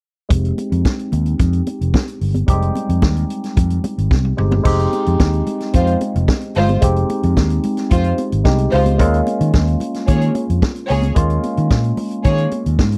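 A dry, close recording in a 1970s studio style frames this driving, danceable disco cut in F minor at 111 BPM, with a straight 4/4 feel. A fingered electric bass, amped and punchy, sits up front beside a vintage acoustic kit with a punchy kick, medium-tuned snare and dark cymbals, the hi-hat, toms and crash heard against the natural studio room. A barky, bright tine electric piano played through a combo amp carries the accompaniment with a phaser and low-pass filter, and a filter sweep runs across it during the opening stretch before a drum fill at 4.1 s leads into the next section. High-tuned, thin-skinned congas patter softly in the background. At 5.7 s a dark chamber string section enters as a second line, bowed sul tasto with light vibrato, a soft attack and a smooth top, while the harmony moves from Fm7 to Eb9sus4 at 9.0 s in this fragment of a longer piece.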